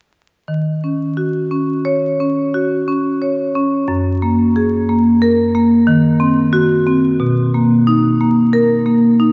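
A flowing, rubato 5/4 pulse carries this reflective contemporary classical fragment for solo marimba, whose bright, percussive, mid-forward tone from medium hard mallets sounds from 0.5 to 9.3 seconds over Ebm7, Gbadd9, Ebm6 and Bmaj7 chords, heard from further back in a drenched cathedral reverb with vinyl crackle and a dulled top end.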